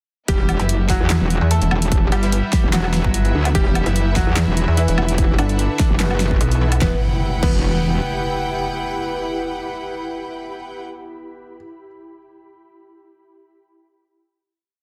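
A heavy, aggressive dubstep piece opens straight into its half-time drop: a punchy overdriven kick, a huge snare, claps, hats, woodblock and crash drive beneath a metallic, distorted wobble bass and a detuned, pulsing pluck wobble bass that answers it, both shifting their wobble speed. Above them a bright, worn grand piano with audible action noise repeats an octave riff through delay, while an intense studio string section holds sustained bowed chords with sidechain pumping, an ethereal, warbling pad drifts in at 1.4 seconds, and very quiet sawtooth chord stabs echo sparsely. The drums and basses fall away by 8.0 seconds, leaving a final chord of piano, strings, pad and stabs, punctuated by electronic zaps and impacts, until the close at 11.5 seconds.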